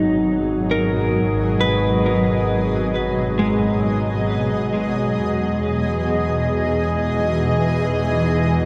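Reflective and serene, this ambient excerpt drifts from G#m7 to Emaj7 at 5.2 seconds as an up-front granular cloud pad with a blurred, evolving texture sustains chords throughout, a clean, picked electric guitar with delay arpeggiates until 5.8 seconds, and an earthy bowed double bass section with light vibrato holds the low end, all bathed in a vast, echoing reverb with a long 7.7-second tail.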